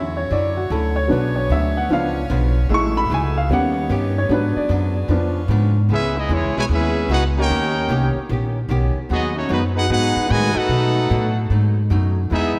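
A warm baby grand piano solos over a clean, hollow-body archtop guitar in the background, tight, bright saxophone-section chords and a woody, growly upright bass, until at 5.9 s the saxophones give way to a clear trumpet section carrying the melody above a mellow trombone second line, lending this brassy, sultry big band swing fragment the glow of a concert hall.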